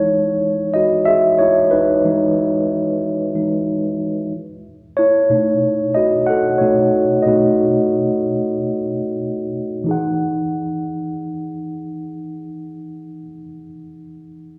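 Smooth and relaxed, this R&B excerpt in swung 4/4 features a lone mellow, clean tine electric piano sitting up front through its built-in speakers, shaped by a low-pass filter sweep from 0.0 to 9.9 seconds as the harmony moves from Emaj9 to B9 and returns to Emaj9 at 9.9 seconds, the whole performance bathed in the wet reverb of a recital hall.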